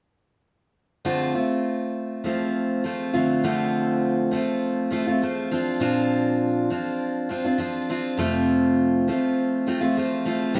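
Carefree and heartfelt, this short pop fragment from a longer piece features a solo picked steel-string acoustic guitar with a bright, full-bodied jumbo tone, entering at 1.0 seconds and moving through Dm7, Bbadd9 and F in a straight 4/4 feel. A brief opening phrase gives way at 3.4 seconds to a longer second passage. The recording is heard from further back in a studio space with a wet, short reverb.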